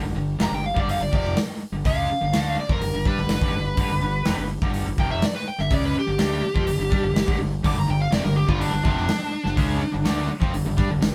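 A biting, overdriven lead guitar solos up front from 0.4 seconds in this swaggering, anthemic hard rock excerpt, carried by a bright, picked distorted guitar riff, a growly fuzz bass, and a punchy, polished gated 80s drum kit with a medium-tuned snare, while a second distorted guitar joins the riff in the background at 7.6 seconds, all in the moderate reverb of a band playing live in one room.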